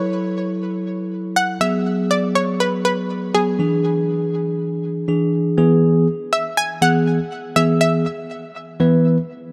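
A straight 4/4 pulse at 121 BPM drives this bittersweet yet confident pop fragment, where an up-front, bell-like tine electric piano carries the chords from F#m7 through F#9sus4 and E7 to E, while a round, detuned sawtooth analog pluck with a fast attack, short decay, chorus and delay sings the melody between G#4 and G#5, the whole set in a moderate plate reverb and a dark production that moves into a new section at 5.6 seconds.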